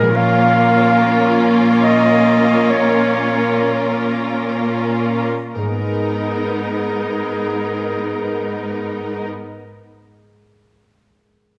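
In free time that slows over the first 5.6 seconds, this longing, bittersweet cinematic film-score excerpt in G# dorian moves from A#m to G#madd9, with a clear, softly attacked solo clarinet and a smooth, lush violin section sharing the second line, an expressive viola section gliding with portamento in the accompaniment, a rich cello section holding the bass, and a ringing, thumb-plucked concert harp arpeggiating until it outlasts the others at 9.9 seconds, all set in a wet scoring-stage reverb.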